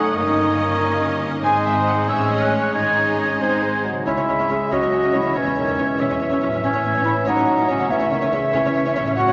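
Dramatic and urgent, this fast romantic orchestral passage is cut from a longer piece and moves at 94 BPM in a straight 6/8, rooted in C# minor. A warm, smooth violin section carries the melody from the background, while a bright, close second violin section, a clear oboe, a dark and roomy clarinet and a pure, expressive flute with a silvery tone weave second lines around it. Beneath them, a focused viola section and a distant bassoon supply accompaniment, a mellow French horn section holds sustained chords, and a ringing concert harp adds fingerpicked arpeggios. The bass is anchored by a clear cello section and a rich double bass section, all the strings bowed with vibrato and a lush ensemble sound. The harmony passes through tense chords before settling onto C# minor at 4.1 seconds, and the whole orchestra sits in a wet scoring-stage reverb that gives the dense texture a spacious glow.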